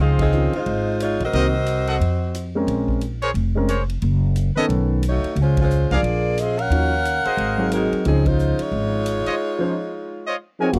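A swinging 4/4 pulse at 179 BPM drives this brassy, energetic big band excerpt in Db major, with the drum kit's hi-hat, ride cymbal and boomy kick joining at 0.2 seconds beneath a woody, pizzicato upright bass played up front. The saxophone section carries the melody with light vibrato, pausing at 2.6 seconds before returning, while a clear, smooth-topped trumpet section adds stabs and a grand piano with deep bass supplies accompaniment through chords such as Dbmaj9, Ebm9 and Ab7. Full-band accents hit at 0.2, 5.5 and 8.2 seconds, a break opens at 9.4 seconds, and a loose trombone section enters at 10.6 seconds, all captured in a dry, close 1970s-style studio sound.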